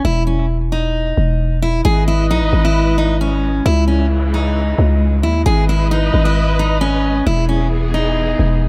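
A growling 808-style bass sits up front in this hard-hitting hip hop excerpt. Its buzzy, sine-based tone strikes with a fast attack and then decays. Beside it, a picked steel-string acoustic guitar carries the melody from the start, its full-bodied dreadnought sound placed close and colored by an analog delay. At 1.9 seconds a dark studio string section enters with sustained, bowed chords, lush and expressive with vibrato and a smooth top, sitting lower in the mix behind the other two parts. The half-time feel gives the groove a heavy, deliberate weight, while the harmony moves mostly between G# minor and C# minor before landing on E near the end. A small room ambience and an echo-heavy mix surround the music with a shadowy, reverberant space.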